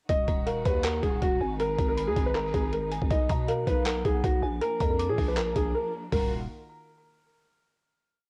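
A dark, intimate concert grand piano sits up front with a looping melody repeated like a sampled loop, its action noise audible and its sustain long, over a cassette-tape haze in this menacing, melancholic trap piece at 159 BPM in a half-time feel, set in Eb harmonic minor. A gritty, overdriven boom bap sampler-style kit with a thumpy kick, handclaps, hi-hat and toms drives the beat, while a growling, buzzy 808-style bass holds long sub-bass notes that follow the kick and slide in pitch. In the background, a lush bowed string section with vibrato and portamento sustains chords, and an eerie, inharmonic FM synth bell with chorus and analog delay adds a sparse counter-melody, all leading through a brief break at 5.7 seconds to a final chord at 6.1 seconds.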